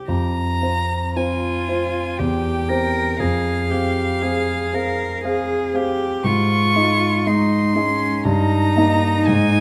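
In a slow, rubato 3/4 at 59 BPM, this melancholic, elegiac excerpt from a romantic piano trio movement sits in F minor and unfolds over roughly ten seconds. A dark concert grand piano carries the accompaniment from the first moment, its mellow tone and deep bass set up front and ranging from E2 to F5. At 0.1 s a rich, focused violin enters with the melody high in its register, between F5 and Db6, its bowed line shaded with vibrato and placed prominently. Beneath it, a warm cello supplies a second line between Db4 and Bb4, its soft attack, airy bow and light vibrato giving it an intimate, close presence. The harmony moves from F minor through C/E, back to F minor, then to Ab and Eb/G, while close, detailed microphones capture the trio inside a recital hall reverb with a 1.7-second decay.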